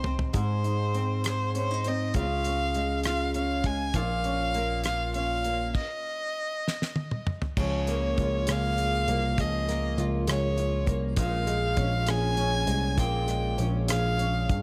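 Heartfelt and tender, this short passage from a six-eight pop ballad sets a rich, smooth bowed violin melody up front, sung with vibrato over a double-tracked, fingerpicked flamenco guitar whose finger squeaks add intimacy. A bell-like tine electric piano carries the bass beneath a dry, damped 70s drum kit with a fat snare and tight kick, which opens with a fill. The music halts in a stop from 5.7 to 7.6 seconds, broken by a second drum fill that leads into a new section where a full-bodied, picked steel-string acoustic guitar adds arpeggios in the background. Light studio reverb surrounds the ensemble as the chords move from Ab through Db and Bbm to Db6 and Bbm7.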